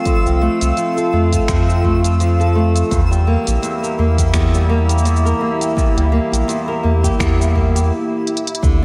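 Intimate and wistful, this folktronica passage moves at 84 BPM in 4/4 with a gentle swing on the sixteenths, cut from a longer piece. A fingerpicked flamenco guitar sits up front playing arpeggios through a delay, while a warbling, lo-fi tape-like pad holds sustained chords with chorus and its own reverb, giving a nostalgic, vintage haze. Deep in the background, a twinkling granular texture adds a bright, sparkling shimmer on a single high note. An electronic kick drum and a produced kit of cabasa, finger snaps and smooth hi-hats enter at 0.1 seconds, and a round, mellow sine sub bass joins at 0.3 seconds, prominent in the mix. The harmony moves from F to Edim at 2.9 seconds, and a brief break near the end carries a drum fill at 8.3 seconds, all set in a dreamy, reverb-soaked hall ambience.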